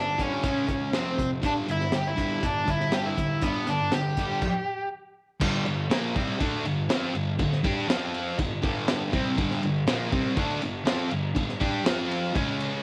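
A thick, double-tracked fuzz guitar drives this raw, rowdy garage rock piece in a straight 4/4 feel with a bright, distorted riff, alongside an overdriven slide guitar carrying the melody until 4.9 s. A crunchy breakbeat kit sits up front with a punchy kick, a high-tuned snare and dark cymbals, its saturated, gritty tone rolled off on top. A short stop from 4.4 s leads into a second section at 5.4 s, and the recording has a light small-room reverb.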